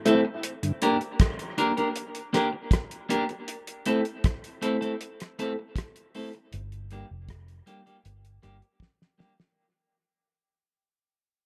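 A damped 70s drum kit sits up front in this hypnotic, spacious dub reggae excerpt at 79 BPM in 4/4: its dark, fat snare, tight kick, rim click and hi-hat carry a break that begins at 0.4 seconds and closes with a drum fill at 8.8 seconds. A bright, twangy clean electric guitar treated with harmonic tremolo and dub echo moves over Gm, Am and back to Gm, joined at the very start by a brief touch of mellow tonewheel organ with slow rotary speaker and key click. A round, foam-muted bass enters low in the mix at 6.5 seconds, all framed by light reverb and small room ambience as the fragment fades out.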